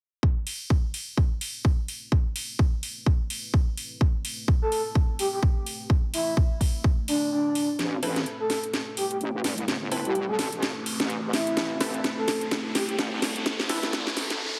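A breathy, flute-like synth lead with vibrato rides up front over punchy kick and cracking snare in this bouncy, swaggering bass house excerpt, where a deep, moody pad pumps in the background before a heavy wobble bass enters at 7.8 seconds alongside bold orchestra-hit-like stabs, a drum fill and a riser with noise sweep building toward the end under a lush hall reverb and a heavily compressed, radio-like sound.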